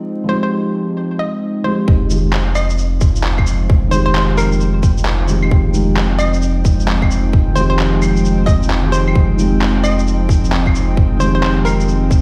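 A wistful, nocturnal future garage excerpt with a swung feel opens on a warbly, nostalgic pad with chorus and its own reverb, a felt-muted upright piano with audible action noise and delay, and a hollow, nasal square-wave pluck melody through tape echo, all three pumping or echoing over a single Fm9 chord until a round sine sub bass and an up-front, tight electronic kick arrive at 1.9 seconds, followed at 2.1 seconds by muffled, sampler-style shaker, handclaps and claves, the whole heard as if played on a big sound system in a bare room with large studio reverb and vinyl crackle.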